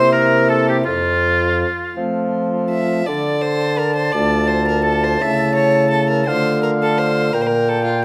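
Dance-like and serene, this baroque-style sonata movement with continuo sways in 6/8 at 56 BPM, moving from F major into D minor at 3.1 seconds. A bowed violin with a rich, gut-string period tone carries the melody alongside a clear, close-miked oboe singing the second line with vibrato, while a pipe organ's sparkling flute stops supply light, bright accompaniment up front. A solo bassoon with light vibrato and a smooth top anchors the bass, all set in moderate recital hall reverb with close, detailed microphones in this short cut from a longer piece.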